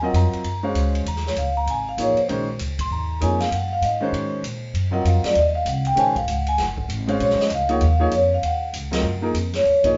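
A soft-mallet vibraphone leads this hypnotic, searching slice of modal jazz, taking a solo in the upper middle register over an Ebm11 harmony, while the band swings in a brisk 4/4 feel. Its tone is mellow and airy, ringing with a slow motor vibrato. Beneath it, a concert grand piano sits up front with a deep bass and an intimate quality, the faint noise of its action audible as it accompanies. The pizzicato upright bass is woody and close, and the big-band drum kit, entering at 0.1 seconds and sitting farther back in the mix, uses hi-hat, ride cymbal, a medium-tuned snare and a boomy kick. The group sounds like a band playing live together in one studio room with moderate reverb and a muted top end, and the passage, cut from a longer piece, closes with a band accent at 9.8 seconds.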